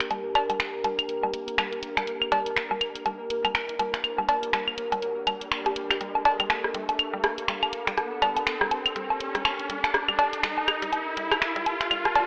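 Up-front electronic woodblock, cowbell, claves and rim click with an analog, tape-warm character sit at the front of this hypnotic, clinical minimal techno build-up, alongside a layered garage kit of finger snaps and hi-hat, a woody, round FM mallet pluck riff with tape echo, a deep, moody sawtooth pad, a pulsing tempo-synced gated texture in the background, and an electronic riser entering at 1.3 seconds, while a filter sweep runs across the synth arpeggio and the whole fragment carries a dry, gritty, telephone-like hardware sound.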